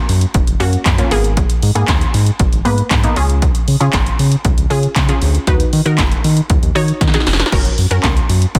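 A dense, heavily limited modern master with little reverb carries this summery, carefree dance-pop cut at 117 BPM in F# major, where a punchy analog drum machine of kick, snare, handclaps, hi-hat and crash sits up front and drops a fill at 7.0 seconds, a round, dark analog bass pumps under sidechain, and a lush, detuned unison pluck with phaser and filter sweep pumps as accompaniment over chords moving from F# through G#madd9, C# and a rootless B back to F#.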